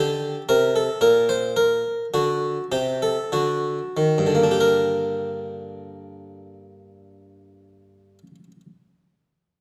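This classical fragment, a baroque-style suite movement, has an introspective, flowing mood and a loose rubato pulse in four. A solo harpsichord in the Italian style plays from 0.0 to 8.6 seconds, its single set of strings giving a plucked, round and full tone that sits close and up front. The opening passage moves from a rich Bbmaj13 to D7 while the pace slows, and a second passage begins at 4.6 seconds by settling onto G minor. The writing spans the instrument's low and middle registers, from G2 up to C5. A moderate recital-hall reverb surrounds the intimate harpsichord sound, lending the brief passage a sense of space.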